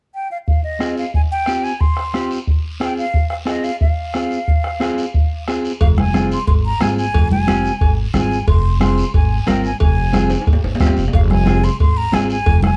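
A breathy silver concert flute carries the melody of this fiery, passionate cumbia, played with vibrato and tongued notes between Eb5 and C6, close-miked and set in a plate reverb. It moves at 180 BPM in a straight 4/4 in F minor. A dark, clean electric guitar sits up front with fingered accompaniment between C4 and Bb4, while a band-limited, vintage bombo with a soft beater drives the pulse and a raspy guiro scrapes from a distance. At 5.8 seconds the groove fills out: a woody pizzicato upright bass arrives up front, joined by ringing cowbell and timbales, with bright congas following at 6.0 seconds. A drum fill at 10.3 seconds pushes the passage forward in this cut from a longer piece, all within a dark production and light reverb.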